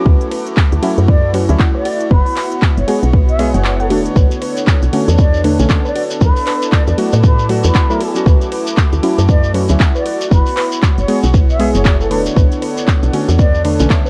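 Smooth and deep, this excerpt from a longer deep house piece moves at 117 BPM in 4/4 with a 59% swing on the sixteenths, set in B dorian with tuning at A4 = 445 Hz. An up-front, tape-warm electronic kick and a layered drum kit of handclaps, smooth hi-hats and ride cymbal drive the groove, while a round, woody FM bass with a fast, decaying attack sits prominently beneath, pumping with the sidechain alongside the pads and keys. Dark chord stabs with chorus, filter sweeps and analog delay carry the harmony through Dmaj9, F#7sus4, Bm9 and E7sus4, supported in the background by a smooth sawtooth analog pad and a nostalgic, warbling tape-like pad with built-in reverb. A lo-fi, detuned dusty pluck plays arpeggios high in the mix's background, and from 1.1 seconds a distant, airy concert flute with straight tone and analog delay carries the melody. After a brief break at 3.6 seconds, a grainy, saturated shekere joins at 4.2 seconds, and the whole sits in a light digital ambience.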